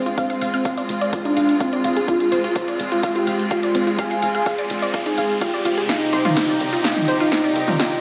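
A smooth, gliding portamento lead with vibrato, chorus and digital delay carries a melancholic melody over a driving 126 BPM melodic techno build-up in F dorian, joined by clear bowed studio strings holding sustained chords, a round, detuned analog pluck playing arpeggios through tape echo, a tight sawtooth sequencer bass in the background, a punchy, tape-warm electronic kick and analog drum machine hi-hat, snare and toms, and a background riser from 0.8 s, with a drum fill arriving at 5.9 s as the harmony moves from Fm to Cm, while the lead, strings, pluck and bass pump to the sidechain inside a lush hall reverb.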